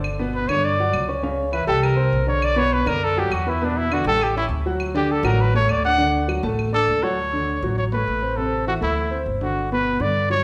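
A jazz-style trumpet takes the lead from 0.3 seconds, soloing up front with light vibrato, scooped notes and a smooth top in this lively, danceable Afro-Cuban jazz excerpt cut from a longer piece. A warm, open baby grand piano with long sustain sits equally forward, while a dark, thumpy upright bass with pizzicato gut strings anchors the low end. Woody claves tick in the background until 6.7 seconds, and the ensemble rings in the generous reverb of a recital hall.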